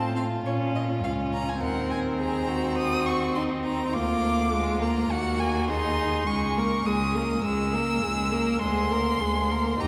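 A focused, up-front first violin carries a restless, stormy melody in this quick classical-period string quartet movement at 103 BPM, cut from a longer piece, with a rich second violin on the inner line, a smooth viola accompaniment and a distant cello bass, all four played with vibrato and bathed in a long church reverb.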